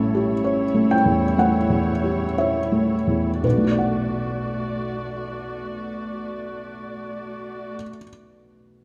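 A rubato 4/4 pulse drifting between 56 and 67 BPM and slowing through the first 3.4 seconds carries this fragile, longing neoclassical fragment in B minor, where a soft, felt-muted upright piano with audible action noise sits intimately up front over an A7 that moves to Bm7, while a veiled, con sordino chamber string section with vibrato holds dark bowed chords beneath it until 7.8 seconds, the piano lingering alone to 8.8 seconds in light reverb captured by close, detailed microphones.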